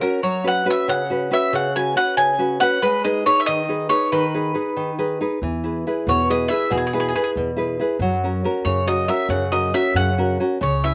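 A bright, picked bowl-back mandolin carries the melody up front, its doubled strings ringing with a slapback echo, in this romantic, sunny Italian folk serenade in 6/8. A woody, fingerpicked nylon-string guitar with old strings plays classical-style accompaniment alongside it, and at 5.4 seconds a thumpy pizzicato upright bass on gut strings joins underneath. The dry outdoor recording is cut from a longer piece.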